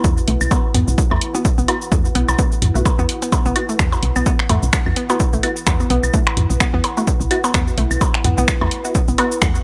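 A punchy, up-front electronic kick, a woody FM bass with sidechain pumping and a tape-warmed analog drum machine of finger snaps, hi-hat and shaker open this quirky, clinical minimal techno fragment. A deep, moody ambient pad with chorus and built-in reverb sits low in the mix, while a hollow, bouncy square pluck with phaser and delay enters at 0.3 seconds, and electronic claves, percussion blips and toms, washed in dub echo and re-recorded in a large room, follow at 0.4 seconds. From 1.3 seconds a muted, resonant dub chord stab on Bsus4 adds phaser and dub echo as a filter sweeps across it, over a swung sixteenth-note groove in an otherwise dry mix.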